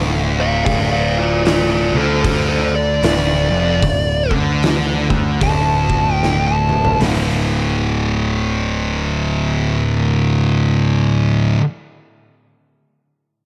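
Two thick fuzz guitars, one warm and up front and the other dark and set back, open this heavy, sludgy stoner and doom metal excerpt at 76 BPM in D minor with a swung feel, riffing over a growling, punchy overdriven picked bass, while a compressed fuzz lead guitar solos with tape echo from 0.4 seconds and an oversized low-tuned acoustic kit with a fat snare, gritty saturation and a bright stone-room tone joins moments later, playing a drum fill from 6.2 seconds before the riff shifts from Dm to a D5 power chord at 7.0 seconds, all within light reverb and small room ambience.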